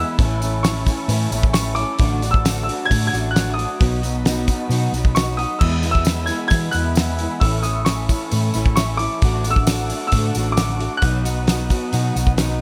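A straight 4/4 groove at 133 BPM drives this hopeful, open-road clip of folk rock and heartland rock, tuned slightly flat to A4 = 438 Hz. The cloth-damped drum kit enters at 0.2 s with a thuddy, fat snare, tight kick, dark cymbals and hi-hat, sitting up front alongside a round, punchy hollow-body short-scale electric bass played with the fingers. A jingly, close and dry tambourine joins at 0.4 s in the background. A picked, plugged-in steel-string acoustic guitar carries the accompaniment with audible finger squeak, while an electric guitar through a small old amp plays a twangy, slightly broken-up riff thickened by an ensemble chorus. A tonewheel organ holds smooth, clean sustained chords with vibrato and key click through a lush chorus, and a clear, vintage-sounding concert grand piano with short sustain takes the melody high up in the range of C#6 to G#6. The harmony cycles through A, D/A, B and E in a small room ambience, and the clip is cut from a longer piece.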